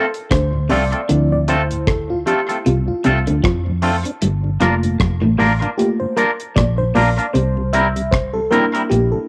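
Bittersweet and longing, this short lovers rock reggae cut carries a loose swing over a Dm7, Gm7 and C7 progression, with a full-bodied FM electric piano taking the lead, its tremolo shimmering over a noise layer. Around it, a twangy, scooped clean guitar plays up-front stabs, while a second guitar through a small old amp picks a slightly broken-up, bright riff, and a foam-muted fingered bass sits round and punchy beneath. A dry drum kit with a tight kick, hi-hat and rim click carries an analog delay, and a mellow tonewheel organ with key click and slow rotary speaker hums in the background, all set in studio reverb with the soft grain of a cassette home recording.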